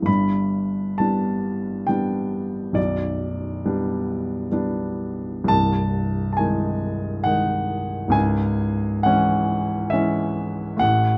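Romantic classical nocturne for solo grand piano, dreamy and nostalgic, moving at a slow 68 BPM in 3/4 with a free, rubato feel and settling into C# minor from 5.5 s. The intimate piano sits up front and close, its natural tone carrying audible action noise, and the dry, detailed sound spans from the deep bass up to the upper middle register. In this short excerpt from a longer piece, the harmony moves from G and G/B to G#/B# before arriving on C# minor at 8.1 s.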